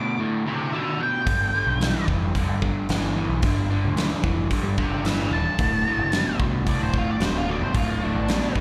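Raunchy and gritty, this short cut from a longer piece is blues rock power trio music with a southern rock edge, moving at 111 BPM in a straight 4/4. It opens with two guitars together: a dark, fuzzed-out octave lead carrying the melody high up with distortion and a digital delay, over a crunchy, double-tracked overdriven guitar playing a low riff up front. At 1.3 seconds a growling picked electric bass, bright and overdriven, joins alongside a big acoustic rock kit of hi-hat, punchy kick and medium-tuned snare, heard up front in a bright stone-room sound. The chords move through D5, G7, G5 and D7. It sounds like a live club gig heard through the venue's PA, with light reverb and club ambience.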